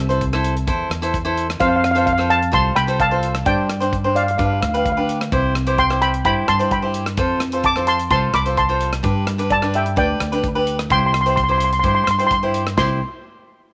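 A light reverb frames this bouncy, festive calypso excerpt at 129 BPM in C major, where a shimmering, mellow steel pan played with soft rubber sticks carries the melody over crisp, bright picked cavaquinho, a woody pizzicato upright bass and a studio drum kit with punchy kick, rim clicks, hi-hat, snare and crash under a rolled-off top, all moving through Am/C, F, Gsus4, G and C.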